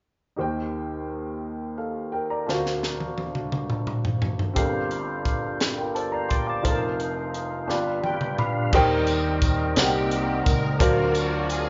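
Uplifting and jubilant, this slow gospel excerpt in 6/8 opens on a clear, slightly worn baby grand piano with long sustain, joined at 2.5 seconds by a crisp fusion drum kit with a punchy kick, high-tuned snare and dark cymbals, then by a percussive tonewheel organ carrying key click through a slow rotary speaker. Drums, piano and organ all fill together just before 8.7 seconds, when the music moves to a new section and a round, amped fingered bass arrives, followed by a jingly tambourine in the background. At 9.8 seconds a studio string section takes up the melody with vibrato and portamento, all heard together in a moderately reverberant room whose top end is gently rolled off.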